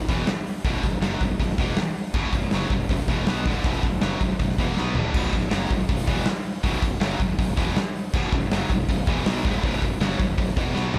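A heavy high-gain guitar leads this aggressive, relentless heavy metal excerpt, its bright, distorted, double-tracked riff sitting up front and ranging from B1 to B3 in B minor. A fuzz-drenched, fingered electric bass growls beneath it in the low register, overdriven and direct-amped, playing throughout the full 11 seconds. A big acoustic rock kit drives the straight 4/4 pulse at 160 BPM, with a punchy kick, a medium-tuned snare, hi-hat, crash and toms, its dark, rolled-off top keeping it smooth despite its forward placement. The riff repeats once, and the harmony moves from Bm to a B5 power chord at 5.1 seconds, with a drum fill marking the turn just before. A moderate concert-hall reverb gives the whole a big arena sound, and another fill lands at 10.8 seconds as the cut from a longer piece ends.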